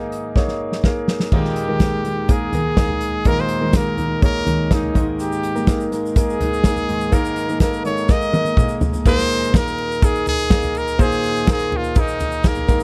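A dry, close 1970s-style studio sound frames this warm, uplifting piano-driven pop excerpt, where a bright trumpet with vibrato carries the melody up front over a clear concert grand piano with audible action noise and deep bass, while an acoustic drum kit played with bundle sticks, with dark cymbals and a punchy kick, opens with a fill; a full-bodied, fingerpicked jumbo steel-string guitar adds a riff in the background from 1.3 to 9.6 seconds, and a grainy, mellow tube shaker joins distantly at 5.2 seconds.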